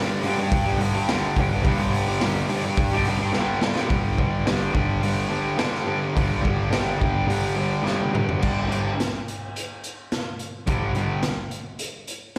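A bright, double-tracked fuzz guitar opens this raw, gritty garage rock fragment with a distorted G5 riff, sitting up front with slapback echo at 106 BPM in a straight 4/4. A raw acoustic drum kit joins almost at once, with a punchy kick, medium-tuned snare, toms and dark cymbals, its rolled-off top saturated in a pumping small room, and drum fills lead into new sections near 3.3 and 7.9 seconds. The whole thing sounds like a live gig heard through the venue's PA with recital hall reverb, and the guitar stops at 11.2 seconds while the drums carry on alone to the end.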